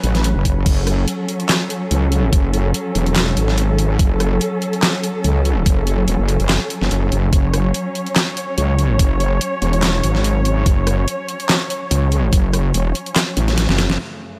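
A heavy, saturated wobble bass sits up front in this menacing, chaotic stretch of heavy wobble dubstep, cut from a longer piece. The bass blends detuned sawtooth and sine tones in unison, with chorus and overdrive adding grit to its fast attack. It runs at 144 BPM in 4/4 with a half-time feel and a light swing on the 16ths, holding an F# minor chord throughout the drop. An overdriven electronic kick with a knocking punch enters at 0.5 seconds, while a layered dubstep kit adds a deep snare, bright hats, handclaps, rim clicks and crash cymbal, with low-pass filtering on its hats, snare and cymbals. Beneath them, a dark, veiled string section plays muted, bowed sustained chords with vibrato and a smooth top, pumping under sidechain compression. The kick drops out at 13.2 seconds, a drum fill follows at 13.6, and the band lands an accent at the close in a dry, upfront mix.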